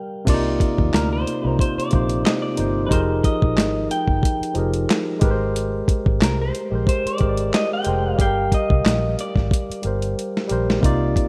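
A barky, lightly overdriven tine electric piano sits up front in this sultry, late-night neo-soul R&B excerpt at 91 BPM in C minor, joined at 0.3 seconds by a gritty, thumpy sampler-style drum kit with handclaps and a dark, foam-muted fingered bass, while a slightly broken-up lo-fi guitar bathed in spring reverb carries the melody from 0.9 seconds over Cm11, Fm11, Abmaj9 and Gm7 chords, ending with a drum fill in a rough home-demo mix.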